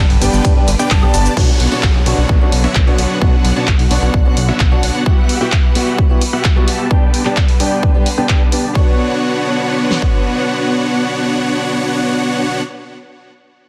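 Anthemic and powerful, this festival progressive house passage opens on a drop where a huge, detuned supersaw riff sits up front, its thick sawtooth body topped by an airy noise layer, with vibrato and delay. A warm grand piano adds brief arpeggios in the background before stopping at 1.3 seconds, while a fat, saturated analog bass with a filter pluck underpins the opening and drops out at 4.9 seconds. A punchy, layered big-room kit drives the track, with kick and snare joined by handclaps, hi-hat, ride and crash cymbals, cabasa and woodblock. From 1.4 to 8.8 seconds a filter sweeps across the supersaw as a very quiet downlifter slips beneath. A dark, boxy fingerpicked acoustic guitar and a biting, intense string section holding sustained chords both pump with the sidechain, moving through B minor add9, E minor add9 and G under light reverb and a dense, heavily limited master.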